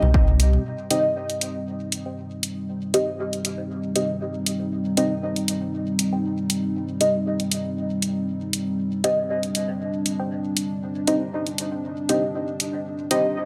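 A hazy, nocturnal dub techno excerpt at 118 BPM in C minor, bathed in a lush hall reverb, where a dark, wave-folded analog pad and a soft, nasal chord stab with chorus, phaser and dub echo pump against the sidechain over a clean sine sub bass and background congas that sound only in the opening 0.6 seconds, while a tape-warm electronic hi-hat enters at 0.4 seconds and a muted, cassette-textured filtered dub stab riff with its own phaser and echo sits far back from 0.9 seconds as a filter sweeps across the synth stab.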